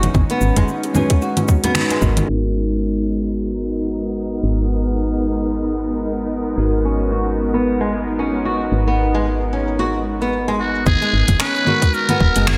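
A buzzy, raspy trumpet with a metal mute takes the melody up front from 10.6 s in this meditative organic downtempo piece, over a bell-like tine electric piano with lush chorus and a detuned, string-like drone, both pumping, along with fingerpicked flamenco guitar arpeggios that drop out at 2.0 s and return at 6.8 s, a woody, round FM bass, an afro-pop kit of congas, finger snaps, metallic hats and shaker, very quiet ringing congas and bongos, and a tight electronic kick, in a dreamy, reverb-soaked mix with a filter sweep through the middle.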